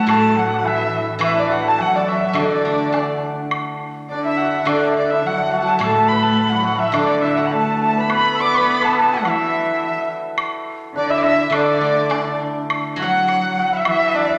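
A festive, graceful Chinese chamber ensemble opens all at once, with a dark, woody erhu singing the melody with vibrato and portamento, set in D gong mode at 105 BPM in 2/4 with a rubato feel. Around it, a bamboo dizi with a buzzing membrane adds a pure, tongued second line from close up, while a shimmering hammered dulcimer and a rich, soft-attacked cello with its own expressive vibrato fill in further lines beneath. A silvery steel-string zither, played with fingerpicks, rings out as accompaniment in the low register, drops out at 8.7 seconds and returns at 11.5 seconds. A close, acoustic woodblock keeps time quietly in the background. The whole ensemble sits in a wet concert hall reverb, and this short passage is cut from a longer piece.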